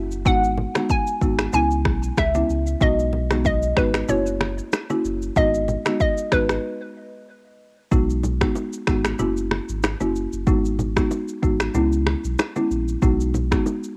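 A deep, round sine sub bass opens this sunny, joyful afrobeats excerpt, joined at once by an electronic afro-pop kit with a deep kick, finger snaps, rim clicks and shaker, while background congas and bongos sit close and dry. A woody, rustic marimba with medium mallets carries the accompaniment through cassette-tape grit, and a hollow, bouncy square-wave pluck, detuned and ring-modulated with chorus and analog delay, leads the melody up front until 7.2 seconds. A chordless break beginning at 6.6 seconds gives way at 7.9 seconds to a second section that returns to the lilting minor-seventh and sixth-chord cycle, all with the dry, homespun feel of a cassette home recording.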